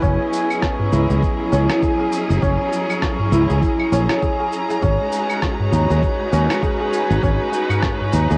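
A lightly swung 100 BPM groove in 4/4 drives this short organic downtempo excerpt, built on a thumpy, compressed electronic kick that drops out at 8.0 s and sampler-style cabasa, claves and rim click, with a very quiet, deep clay darbuka played with soft hands joining at 0.3 s. Up front, a shimmering, ringing santur plays arpeggios through analog delay and plate reverb while a growly, punchy fretless electric bass anchors the low end, and a clear, focused studio string section holds bowed vibrato chords that pump under sidechain, moving from F#13 to Bmaj9 at 4.8 s. The mood is earthy and meditative, with cassette tape coloring the santur, strings and electronic drums, and a tight booth ambience giving a homespun feel.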